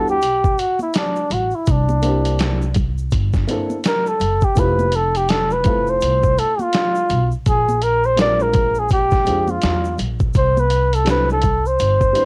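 A bucket-muted trumpet, dark upright piano and upright bass open this mellow, smoky jazz-hop excerpt, a swung 4/4 hip hop groove at 83 BPM cut from a longer piece. The trumpet carries the melody as a veiled solo up front, with vibrato, scooped notes and a vintage cassette-tape coloring. Beneath it, the piano plays an intimate accompaniment with audible action noise and short sustain, while the pizzicato bass adds a growly, woody low end. A gritty, compressed sampler-style drum kit arrives at 0.2 seconds with a thumpy kick, medium-tuned snare and hi-hat, also tape-tinged and placed up front. Bright egg shaker and hard-handed congas sit close and dry in the background. The chords move from Em7 through C9, Fmaj7 and A#9 to C69, and the home cassette recording leaves little reverb around the parts.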